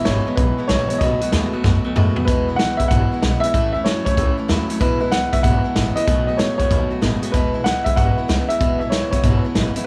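A dark, mellow upright piano carries the melody in this rollicking, rowdy rockabilly excerpt, its smooth, woody vintage tone dressed in plate reverb and tape echo. It drives along at 190 BPM in 4/4 with a swung feel on the eighth notes, in E major, moving through E, B7 and A changes. Underneath, a bright, full-bodied picked steel-string acoustic guitar plays the accompaniment with plate reverb, while an electric guitar through a small old amp plays a twangy, slightly broken-up riff bathed in spring reverb. A pizzicato upright bass with gut strings gives a thumpy, dark pulse, and an up-front vintage drum kit with a punchy kick, medium-tuned snare, hi-hat and toms sits in a natural small room with a rolled-off top. A drum fill from 1.6 to 2.3 seconds kicks the band into the next section, and the whole performance has light reverb and a small-room ambience.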